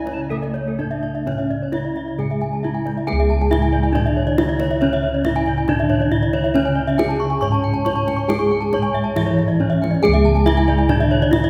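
A brief, pure-toned alto recorder line with soft vibrato floats above the opening, ending by 0.5 seconds as a shimmering, hypnotic Balinese gamelan texture takes hold. Up front, a dark, smooth bronze metallophone struck with a horn mallet carries the melody, its paired tuning producing ringing, beating overtones. Beneath it, a mellow, soft metallophone played with padded disc mallets supplies the low accompaniment, while round, padded bossed gongs anchor the bass. Two brighter metallophones spin arpeggios higher up: one airy, the other close-miked, dry and full. A deep kendang sits in the background, and the whole ensemble blooms in the generous reverb of a concert hall, with the music moving into a new section at 3.1 seconds.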